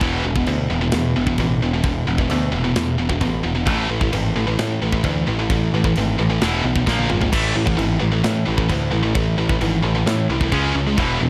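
From the first beat, a double-tracked, high-gain guitar riff, an overdriven, growly picked bass and a tight metal drum kit all drive in together in this short, dark and epic heavy metal excerpt at 131 BPM in a straight 4/4. The distorted guitar sits up front in a low register, moving from E5 to A5 and back, with a tense A#5 chord appearing briefly before settling on A5 and closing on C#5. The bass, also up front, anchors the low end with a direct, amped edge. The drums sit mid-forward, with bright cymbals including china and crash, a medium-tuned snare, a tight kick and toms. A quick drum fill lands at 6.9 s. A small room ambience gives the whole mix a compact, studio-close feel.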